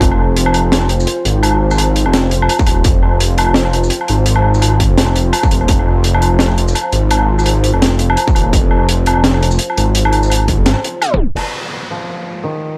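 A deep, rumbling detuned saw bass drives this heavy, cinematic half-time drum and bass passage, sitting up front beside a gritty, saturated breakbeat kit with dark cymbals and a high-tuned snare. A distorted electronic kick drops in and out, while a moody analog pad with chorus and sidechain pumping hovers in the background. The drop ends in a tape stop at 11.0 seconds, then a downlifter sounds and a dry, woody koto enters at 11.9 seconds with filtered, delayed arpeggios.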